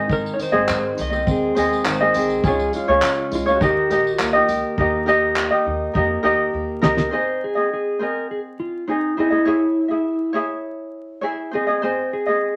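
Acoustic pop at 102 BPM in Ab major, this carefree, heartfelt passage, cut from a longer piece, sets a light, up-front fingerpicked ukulele against a clean, dark lap steel guitar that carries the melody with slide and volume swells. A full-bodied jumbo steel-string guitar, plugged in and fingerpicked, adds arpeggios beneath, while a woody, thumpy pizzicato upright bass anchors the low end until 7.1 seconds. The cloth-damped drum kit sounds dry and smooth, with a fat snare, tight kick, rolled-off top, handclaps and tambourine, and a jingly tambourine sits in the background until 4.6 seconds. A drum fill at 6.5 seconds closes the kit's part, after which the ukulele and lap steel carry on, joined briefly by the guitar's arpeggios until 7.7 seconds, with a turn to Db minor before resolving back to Ab. Wet studio reverb and a layer of vinyl crackle give the whole a gently worn, intimate glow.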